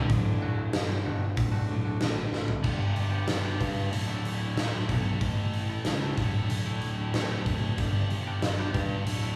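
A band playing live in one room fills a large studio with moderate reverb, giving this short cut from a longer quiet-loud alternative rock piece an anthemic, restless energy in a straight 4/4. Up front, a big acoustic rock kit hits with a punchy kick, a fat snare, hi-hat, crash cymbal and toms in a bright, stone-like room sound. A fuzz-drenched picked electric bass growls underneath, while a biting overdriven guitar drives the riff throughout, supported at first by a second, mellower overdriven guitar in the background. That second guitar drops out at 2.6 seconds, just after a drum fill, as the music moves from D into a new section cycling through G, Dsus2 and A5. All the while, a clean, compressed, twangy electric guitar weaves quiet arpeggios behind the band.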